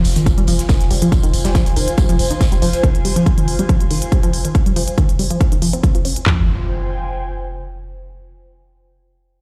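A heavy-kicked, up-front techno drum kit of handclaps, kick and toms drives this industrial, peak-time techno cut at 140 BPM in F minor. Around it sit a round, deep sub bass with overdrive and sidechain pumping, and a tight, detuned sawtooth sequenced riff with chorus, phaser and tape echo. A breathy, airy pad lingers until 7.9 seconds, layered with smooth electronic hi-hats and a big-room acoustic kit of hi-hat, snare and tambourine. Electronic impacts strike at the start and again at 6.3 seconds, all in a large studio reverb.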